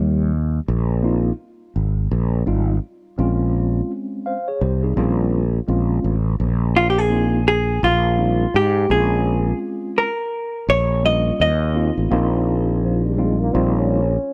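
A swung 84 BPM groove in 4/4 carries this cool, mellow jazz-hop excerpt in Bb dorian, built on a bright, growly fretless electric bass that sits up front through its whole length while a clean, mellow tine electric piano adds chords like Abmaj13 and Bbm9 from 1.0 seconds. A dark, compressed hollow-body jazz guitar sounds briefly at the start, then returns with the picked melody at 6.8 seconds as the music moves into its second section. Near the close, at 12.8 seconds, a distant, breathy trombone slips in with a whispered, intimate line touched by light vibrato, all within a dry, close 1970s-style studio sound with a digital ambience.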